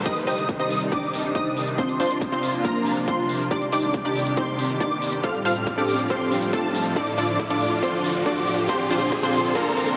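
Uplifting trance at 139 BPM in C dorian, driving and emotional, this build-up cut from a longer piece sets a lush, bright supersaw pad and a punchy, detuned unison pluck melody up front, with a catchy plucky unison lead carrying a second line high above with vibrato and a filter sweep, all three pumping to the sidechain and the two plucks trailing tape echo. A riser runs in the background throughout, over a punchy electronic kick and metallic hi-hats re-recorded in a small room, with a drum fill from 7.0 s to the end. Chords move from Cmadd9 through Bbadd9, back to Cmadd9, then Fadd9 and Dm before settling on Bbadd9, and the whole mix is soaked in a huge, dreamy reverb with a 6.2 s tail.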